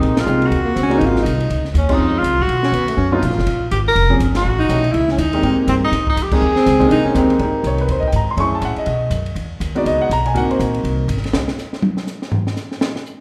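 A wet recital-hall reverb surrounds this fast, playful small-group swing and bop excerpt in Ab major, taken at 244 BPM in 4/4 with a swung eighth-note feel. A clear tenor saxophone carries the melody with light vibrato and a soft attack, sounding roomy yet up front. A breathy alto saxophone joins at 0.6 seconds on an intimate, whispered second line full of subtone and scooped notes. A natural-sounding baby grand piano supplies the accompaniment, and a woody, thumpy pizzicato upright bass on steel strings sits warm and up front. Punctuated by band accents, the harmony moves through chords such as Dbmaj7, B7#11 and A7#11, then shifts to Gbm7, Emaj7 and Ab7 in the second section. The compact cocktail kit, dark and smooth with a high-tuned snare, punchy kick and rolled-off top, plays behind the group and takes a drum solo at 11.3 seconds.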